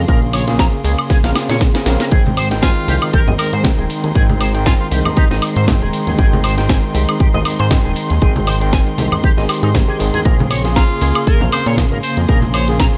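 A punchy, up-front electronic kick drives this groovy, feel-good nu-disco excerpt alongside a house drum kit with a cracking snare, hi-hat, ride cymbal and woodblock, a glossy, nasal chorused synth bass, a twangy envelope-filtered guitar riff, a gritty overdriven tine electric piano with fast tremolo, veiled muted strings pumping in the background, and very quiet ringing cabasa and congas that join after a drum fill at 1.1 seconds, while a bright tenor saxophone with tape echo carries the melody from 2.6 seconds.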